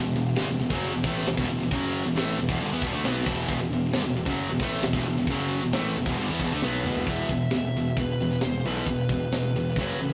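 Heavy and relentless, this heavy metal excerpt drives two bright, distorted rhythm guitars, the high-gain one up front, over a growly fuzz bass and a tight drum kit with a high-tuned snare and rolled-off top, until a drum fill at 6.6 seconds brings in a dark high-gain lead guitar as the riff shifts to a power chord, all within a rough rehearsal-room sound with stone room reverb and tube saturation.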